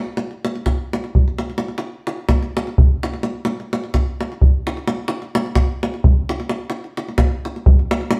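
A tight, close and dry davul sits up front from 0.2 s to 8.2 s, driving this virtuosic, bittersweet fragment of Balkan folk in a straight 7/8 at 257 BPM counted in eighths, set in a live studio room with a noticeable 0.8-second reverb tail.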